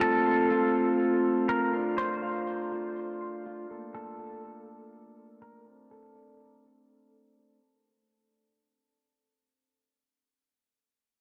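A half-time hip hop groove in 4/4 sets an unhurried, floating pulse for this blissful, dreamy excerpt, cut from a longer piece and awash in cathedral reverb. Up front, a clean electric guitar carries the melody with a picked, twangy, compressed tone, softened by a low-pass filter and trailed by analog delay. Beside it, a pipe organ on sparkling flute stops holds light, romantic sustained chords, moving from F to Bbmaj7 at 3.7 seconds. Further back, a ringing, fingerpicked Celtic harp spins bright arpeggios through its own filter and delay, and it lingers alone after the guitar and organ stop at 7.6 seconds, continuing until 9.6 seconds. A filter sweep and a fade-out run across the opening stretch, deepening the hazy, suspended atmosphere.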